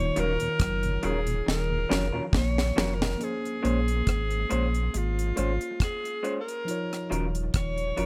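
A clear, breathy-toned alto saxophone carries the jazz-style melody up front with a soft attack and tape echo, giving this slow lovers rock reggae piece in Bb minor at 69 BPM a smooth, longing mood. Beneath it, a round sine-like sub bass and a dry, deep drum kit with a high-tuned snare and tight kick sit prominently, with a drum fill from 1.5 to 3.2 seconds. Two slightly broken-up electric guitars through a small old amp play a dark, lo-fi riff with subtle chorus and echo and some background stabs, while a worn, slightly out-of-tune tine electric piano sits further back and a very quiet, mellow rotary organ drops out at 3.1 seconds, all in a light studio reverb.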